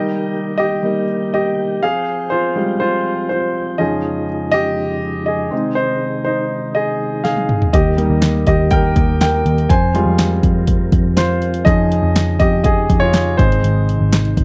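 Hopeful and anthemic, this piano-driven pop excerpt opens with a clear, polished baby grand up front, carrying the lead over smooth tonewheel organ chords coloured by chorus vibrato, key click and a slow rotary speaker. A drum fill at 7.2 seconds brings in an electronic, layered deep house kit with a deep kick and fat snare, plus handclaps, hi-hat and toms, and at 7.7 seconds a dark, round, foam-muted picked electric bass joins underneath. The sound is dry and close in a 1970s studio style with light reverb, and the progression cycles twice from Eb through Fmadd9 and Dbadd9/F to Ab.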